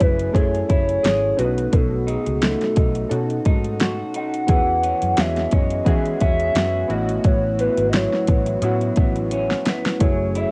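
Indie bedroom pop at 87 BPM in E major, sunny and hazy, with a gentle 16th-note swing and a cassette-tinged home-recorded glow, cut from a longer piece. An up-front deep house kit with a deep kick, fat snare and metallic hats drives things along, together with a round, foam-muted fingered electric bass and a dark, slightly broken-up picked guitar through a small old amp that wobbles with pitch drift under lush chorus and plate reverb. Evolving analog keys and a mellow, wave-folded lead melody with vibrato float over chords moving from F#m9 through B7, E69 and A69, with a drum fill at 9.3 seconds turning back to F#m9.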